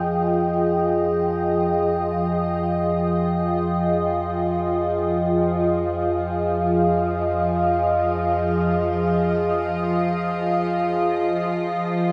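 Floating in free time, with a synth drone fading in across the full 12.1 seconds, this ambient fragment from a longer piece feels reflective and spacious. Up front sits an evolving wavetable pad, a mellow, morphing blend of detuned unison voices with chorus and its own reverb, holding sustained chords from a minor-seventh harmony that shifts to a hollow fifth over the same bass note at 11.1 seconds. Beneath it, a deep, ominous drone rumbles darkly on a single low note throughout, with a slow attack and long release. At 5.2 seconds a very quiet bowed-like drone joins, string-like and nasal, with a tense, bright edge, a noise layer and vibrato. The whole mix sits in a vast, echoing space, washed in huge reverb with a very long tail.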